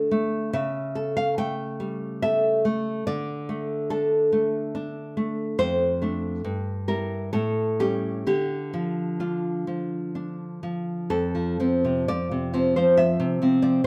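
A moderate stone-room reverb surrounds a full-bodied, up-front nylon-string guitar, fingerpicked in a classical style and heard alone for this short 13.9-second passage cut from a longer romantic piece. In D minor and 3/4 at a rubato 59-72 BPM, the wistful, melancholic music moves through D5, A7/C#, Dm/F, Edim/G and A7 before settling on Dm, then turns toward F at 11.1 seconds as a new section begins.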